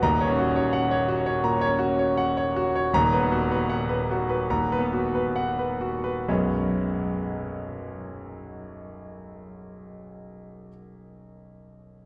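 Peaceful and intimate, this short fragment of a longer neoclassical minimalist piano piece drifts in B major at a rubato 65-86 BPM in 4/4. A solo concert grand piano carries everything, with a warm, smooth and slightly vintage tone and a deep bass that reaches down to D#1, while its upper register extends to A#5. The piano sits up front, yet it is bathed in a wet, cathedral-like reverb with a long 4.8-second decay that suggests a church or concert hall. The opening passage slows down as it moves from D#m7 to Bmaj7/D#. A new passage begins at 6.3 seconds, settling on a Bsus2 chord before the piano stops at 12.1 seconds.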